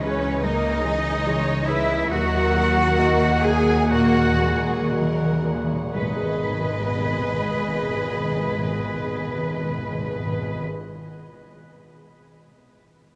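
A sorrowful, longing cinematic orchestral excerpt opens with a lush violin section carrying the melody in rubato while flute, clarinet, oboe and a second violin line drift behind it, a clear viola section and a felt-muted upright piano with audible action noise accompany, a mellow French horn section holds chords, a ringing harp plays arpeggios, and rich cellos and an up-front double bass section anchor the bass, with timpani joining at 2.1 seconds for a fill as the music slows, all of it bathed in a huge, echoing reverb until the piano sounds alone to 13.2 seconds.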